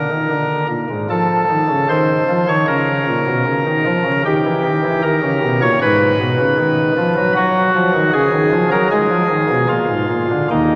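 A nasal, up-front cornet stop on pipe organ, with a baroque voicing and audible chiff, carries this solemn, grave classical chorale in Eb minor at a steady 76 BPM in 4/4, ranging from Eb2 to Db5 through a dark progression that closes on Bb7, all bathed in a cavernous 4.4-second cathedral reverb with a layer of vinyl crackle in a 10.8-second fragment cut from a longer piece.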